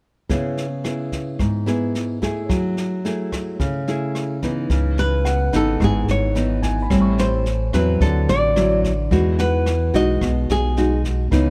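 A light reverb and an intimate, natural small-room sound frame this smooth bossa nova excerpt in C# minor, moving at 109 BPM in a straight 4/4. A fingerpicked classical nylon-string guitar opens as accompaniment, warm and up front, over a jazz brush kit with a medium-tuned snare, rim clicks and a boomy kick. At 4.7 seconds a fingered electric bass enters, round, punchy and direct, sitting prominently low in the mix. A second nylon-string guitar carries the melody from 5.0 seconds, its old strings giving a woody, fingerpicked tone, while a warm grand piano adds high accompaniment softly in the background. The harmony moves from C#m7 and F#m9 into C#m9, then through Am7 and D9 to close on Emaj9.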